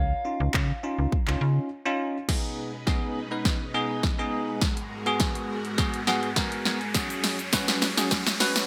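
A soft, round FM synth lead and a snappy, metallic slap-like FM bass open this carefree, summery dance-pop excerpt before a bell-like tine electric piano and a punchy, up-front house kit with gated reverb take over, and after a short break at 1.7 seconds, shimmering vintage string-machine violins enter at 2.3 seconds for a build-up with a drum fill, filter sweep, background riser, an electric piano fill and a faint, jingly tambourine, all in a bright 1980s-style digital sound.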